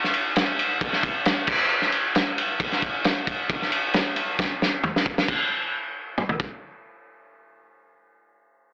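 A loose, up-front indie rock drum kit opens this restless, intricate excerpt at 134 BPM in a straight 4/4, its tight kick, medium-tuned snare, toms, ride and crash sounding gritty and mid-forward with a rolled-off top, all inside a blown-out, overdriven recording with an AM-radio tone and moderate spring reverb, as a drum fill at 4.4 seconds leads into a new section at 5.3 seconds before the kit stops at 6.5 seconds.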